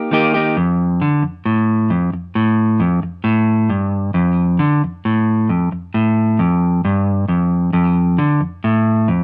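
A moderate studio reverb gives this live-in-one-room rock recording a natural sense of space, with a clean electric guitar sitting up front and playing throughout its 9.2 seconds. The guitar's tone is dark and fingered, ranging from F2 to G4 at a straight 134 BPM in 4/4, moving from Eb to F within F mixolydian. Cut from a longer piece, it feels wistful yet upbeat.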